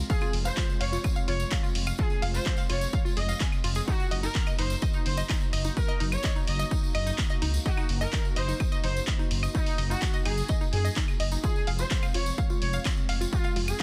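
Melodic techno at 127 BPM in a straight 4/4, this dramatic, hypnotic excerpt cut from a longer piece moves from F minor to an E-flat minor chord over G-flat at 3.9 seconds and back to F minor at 11.4 seconds. An overdriven, layered electronic kick sits up front, joined by a punchy analog drum machine playing claves, handclaps and hi-hat, plus a jingly acoustic tambourine that sounds distant in a large room. Beneath them, a menacing detuned saw bass with a filter swell and saturated edge pumps against the kick, while a deep, moody analog pad with ring modulation and a slow attack holds sustained chords in the background. An expressive portamento lead carries the melody with vibrato, lush chorus and dub echo, accompanied by a very quiet, close violin section bowing a second line in the same register. A round, detuned analog pluck spins arpeggios through chorus and tape echo, and the whole mix lands as a dense, heavily limited modern master in a digital ambience.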